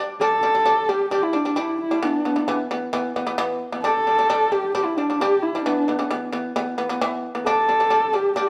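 Heard in a moderately reverberant large studio with the players together in one room, this proud, vast Mongolian folk piece at 132 BPM in 4/4 places a husky, dark horsehead fiddle up front, its bowed melody expressive with vibrato and portamento, over bright, buzzing plectrum-plucked shamisen arpeggios that begin at 0.0 s, while the harmony alternates between G5 and E5.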